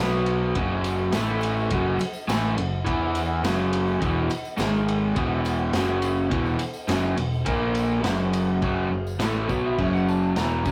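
Garage rock with a raw, swaggering mood at 104 BPM, cut from a longer piece and captured as a rough rehearsal-room take, where a crunchy, double-tracked overdriven guitar riff sits up front over round, punchy picked electric bass and a jingly tambourine tucked into the background. A crunchy breakbeat drum kit joins at 0.3 seconds with a tight kick, dark cymbals and a gritty, saturated, rolled-off top, while the power chords move between B5, F#5, A5, E5, G#5 and A#5. The music shifts into a new section at 8.6 seconds, and shortly after, at 9.2 seconds, a slightly broken-up electric slide guitar melody slips in from the background.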